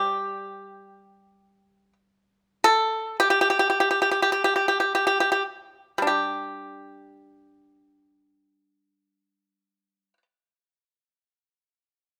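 A solo pipa, played with fingerpicks and heard dry, percussive and up front through close, detailed microphones, carries this serene, elegant Chinese traditional excerpt in free time, spanning G3 to A4 and slowing down between 1.7 and 6.1 seconds before a new section begins.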